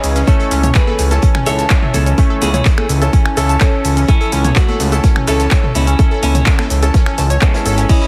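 Dreamy and emotional, this progressive house excerpt sets a punchy, up-front electronic kick and a fat, detuned analog bass that pumps to the sidechain under a layered house kit of cabasa, crash, finger snaps, handclaps and hi-hat, a very quiet vintage kit of hi-hat and snare, and background electronic toms and congas with a tape-warm tinge. Above them, a clean semi-hollow electric guitar carries the melody through digital delay beside clear baby grand piano stabs, a crystalline wavetable pluck arpeggiating with chorus from 0.2 seconds, a soft FM synth bell and a lush unison pad on an A/C# chord, all squeezed into a heavily compressed, radio-like sound with light reverb.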